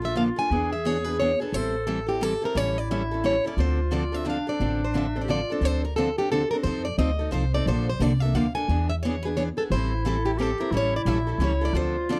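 Breathy, scooping clarinet, boxy parlour-style picked guitar accompaniment and woody, thumpy gut-string upright bass open this virtuosic, swinging D minor jazz manouche fragment at 176 BPM in 3/4, joined at once by a bright plugged-in steel-string guitar carrying the melody up front, while the clarinet's soft-attack, vibrato second line drops out at 5.6 seconds and returns at 9.7 seconds over chords moving from Bbmaj7 through E7 and Am7 to A7, heard in a dry, close 1970s-style studio sound with light reverb.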